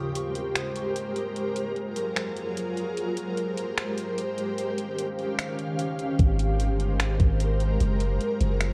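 An ethereal, airy pad of detuned unison voices, treated with ensemble chorus, tremolo and sidechain pumping, sustains Abmaj9, Gbmaj9 and Eb9 chords from the opening of this dreamy, floating cloud-rap hip hop fragment at 149 BPM in a half-time 4/4 feel in Ab major; an electronic R&B kit of knocking kick, metallic hi-hats and finger snaps joins at 0.2 seconds, a deep, sine-toned 808 bass arrives up front at 6.2 seconds, and the whole is wrapped in light digital ambience and the worn, warbly pitch drift of old cassette tape.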